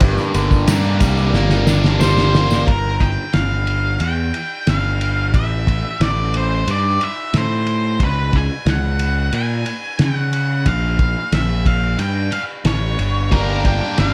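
A fuzzed, punchy bass and a muffled, thuddy cloth-damped drum kit open this dark, hypnotic psychedelic rock excerpt at 90 BPM in G dorian, joined at first by a bright, phased, double-tracked overdriven guitar riff, reedy background harmonium chords and a jingly tambourine, before a drum fill leads to a dark octave-fuzz lead guitar melody with slapback echo entering at 2.0 seconds and carrying over shifting chords from Gm through Am, C#5 and Bbm until the riff and harmonium return at 13.3 seconds.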